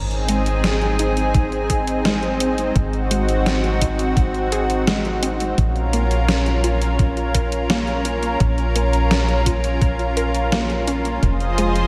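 A straight 4/4 pulse at 85 BPM drives this moody, nocturnal synthwave cut in Bb minor, where a gated 80s digital drum machine's hi-hat and gated-reverb snare and a thumpy, tape-warm electronic kick arriving at 1.3 s sit under a punchy, nasal sawtooth sequencer bass and a thick, detuned unison pad, bright with chorus and sidechain pumping, holding Ab, then Bbm, then Fm7 by 11.2 s, while a warbling, wave-folded unison pluck plays tape-echoed arpeggios in the background, all soaked in a dreamy cathedral-sized reverb.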